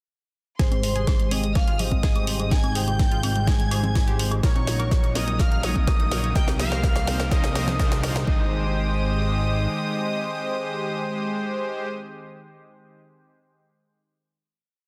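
Expansive and hopeful, this short progressive house piece is a build that runs to 8.3 seconds: an up-front, overdriven four-on-the-floor kick, programmed hats with a cracking backbeat snare, a tribal conga and woodblock loop in the background, a very quiet riser from 5.0 seconds, and a fat, saturated sawtooth bass holding the roots. Over this, a smooth, resonant synth lead with vibrato sings motif-based phrases, doubled an octave higher by an intimate studio violin section, while a lush unison pad, a round analog pluck arpeggiating in sixteenths, and soft supersaw off-beat chords under a filter sweep all pump with the sidechain. From 8.3 seconds the drums fall away and the lead, strings, pad, pluck and supersaw ring out on a final Abmaj7 chord, with the bass stopping at 9.7 seconds, in a dense, heavily limited mix with light reverb.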